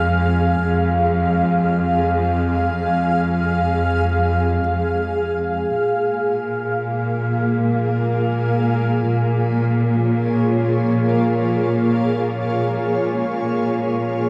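Bathed in a vast, dark reverb with an 8.5-second tail, this serene, spacious ambient excerpt drifts in free time in Bb minor. A blurred, detuned granular cloud pad sustains slowly blooming chords throughout, while a bowed chamber cello section holds a smooth, vibrato-tinged bass beneath it, and a felt-muted upright piano, soft and barely audible with audible action noise, traces a melody only until 4.6 seconds. The harmony rests on Fm before shifting to Bbm7 at 5.8 seconds.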